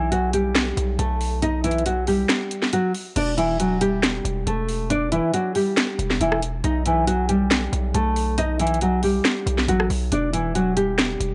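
A fingerpicked nylon-string guitar carries the melody in this melancholic, eerie trap excerpt, its full-bodied classical tone softened by a low-pass filter and trailed by analog delay. Beneath it, a heavy, aggressive 808-style bass with a noise layer and fast, decaying attack sits up front, while an overdriven electronic kit of sharp snare, metallic hi-hats, rim clicks, finger snaps and crash keeps a half-time feel, with the kick dropping out from 2.3 to 3.2 seconds before the second section begins. The whole cut carries a dry, gritty cassette-tape character in a digital ambience, moving between E minor seventh and B chords.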